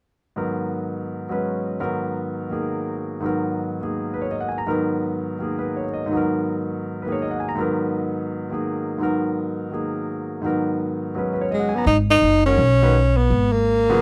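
Searching and spiritual in mood, this modal jazz passage, cut from a longer piece, swings in four. A clear concert grand piano carries the accompaniment alone from 0.4 s, resting on a single minor ninth chord, its deep low register and long sustain filling the space while the soft clatter of its action stays audible. At 11.5 s a breathy tenor saxophone steps forward with the solo melody, its soft attack and scooped notes giving the line a close, warm voice. Moments later, at 11.9 s, a pizzicato upright bass enters with a woody, thumpy tone as the music moves into a new section. Close, detailed miking and a touch of light reverb keep the three instruments present and up front.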